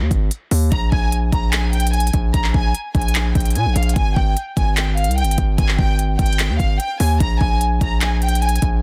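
Triumphant yet dreamy, this short trap excerpt moves at 148 BPM in a half-time feel, with a punchy, saturated 808-style bass sitting up front from the start and an overdriven electronic drum kit of knocking kick, crisp hi-hats and handclaps, re-recorded in a small room, entering at 0.1 seconds. From 0.7 seconds a close, intimate violin section carries the melody high in its range, bowed sul tasto with light vibrato and trailed by tape echo. The harmony centres on a rootless Fmadd11 over Bb, and the whole mix has a dense, heavily limited modern master set in digital ambience.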